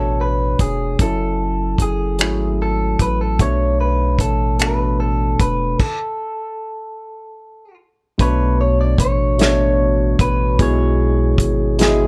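A barky tine electric piano, lightly overdriven through a combo amp with a phaser, opens this late-night, yearning slow six-eight R&B excerpt in B dorian at 50 BPM. It is joined from the start by a round, deep analog bass with a filter sweep and an electric guitar carrying the melody, picked and compressed at the edge of break-up, with slapback echo and plate reverb. A soul drum kit enters at 0.6 seconds, tight and roomy with dark cymbals, finger snaps and a rolled-off top. The harmony moves between Bm9 and F#m7 before a stop at 5.8 seconds. From 8.2 seconds a very quiet glass harmonica adds glassy, ethereal sustained chords over Bm9 and a rootless Amaj9. The guitar, piano, bass and drums sit up front in a lightly reverberant mix, and the passage is cut from a longer piece.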